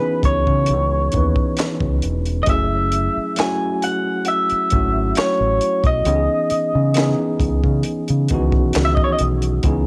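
Sultry and late-night, this slow neo-soul and R&B excerpt moves at 67 BPM in C# minor with a gentle sixteenth-note swing, drifting from C#m9 to F#m9 and back. A slightly broken-up electric guitar through a small old amp carries the picked, compressed lo-fi melody up front, over a clean tine electric piano heard through its built-in speakers, both with a cassette-tape tint. A round, dark fingered dub bass and a dry compact cocktail kit with a high-tuned snare, punchy kick, hi-hat and handclaps enter at 0.2 seconds, all sitting in a small-room home-recording ambience.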